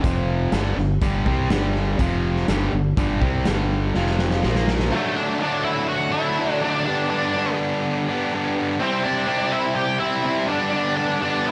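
This driving, confident classic rock passage, cut from a longer piece, opens on a bright, overdriven electric guitar riff up front, joined in the background by a rawer garage guitar playing its own riff. Beneath them sit a growly, punchy fingered electric bass and a gritty, saturated drum kit with a medium-tuned snare and a rolled-off top, moving in a straight 4/4 over F5, G5 and Bb5 chords. A drum fill starting at 4.0 seconds leads into the next section. At 4.9 seconds the bass, drums and garage guitar drop away while the main riff guitar carries on, and a dark octave-fuzz lead guitar takes the melody with wah and distortion. A smooth tonewheel organ sits very quietly behind it, holding chords through a rotary speaker as the harmony moves among D, G and Cadd9, and the whole recording sounds dry, with little reverb.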